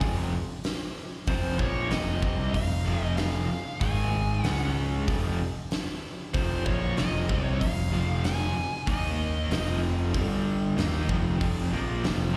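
This menacing hard rock excerpt opens with everything but the lead at once: a crunchy overdriven guitar with tremolo and slapback echo sitting in the background, an overdriven semi-hollow guitar with its own slapback echo also playing a riff, a growly fuzz-laden picked bass up front, and a big acoustic rock kit with a fat snare, punchy kick and hi-hat ringing in a bright stone room. The groove is driving and straight at 95 BPM in 4/4, rooted in F minor, with the two rhythm guitars carrying riffs from the low register up to Eb4. At 1.3 seconds a dark, nasal lead guitar with a parked wah enters, its overdriven tone and slapback echo carrying a melody between C5 and Ab5 until 9.8 seconds. Underneath, the chords move through power-chord shapes on F, Ab, Db, Eb and G, keeping the mood dark and insistent. The whole performance sounds like a live gig heard through the venue's PA, with a light recital-hall reverb around it, and the piece breaks off at about 12.4 seconds as a cut from a longer track.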